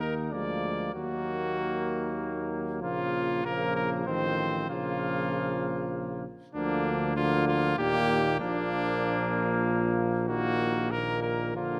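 A clear, up-front trumpet carries the melody in this noble classical brass quintet passage, cut from a longer piece and moving in a flexible, rubato triple metre. Beneath it, a warm, vintage-toned flugelhorn with light vibrato sings a second line, while a close-miked trombone and a French horn sit in the background as accompaniment, and a punchy, distant tuba anchors the bass. Close, detailed microphones capture the ensemble inside a moderate concert hall reverb, and the harmony shifts from darker minor chords toward a settled major colour from 6.6 seconds.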